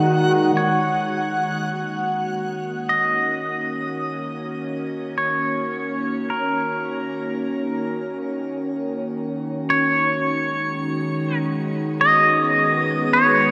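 A clean electric pedal steel guitar, played with fingerpicks and slide, fades in at 0.6 seconds with volume swells and a compressed melody, carried by tape echo and shimmer reverb in a vast cathedral-like space. Beneath it, an up-front, morphing wavetable pad sustains detuned chords from Ebm7 to Abm7 at 9.7 seconds, thickened by chorus and shimmer. At the very start, a very quiet reedy pedal harmonium drone and a bright, reversed granular swell sound only briefly, giving this slow, serene ambient excerpt in Eb minor a dreamy, reflective opening.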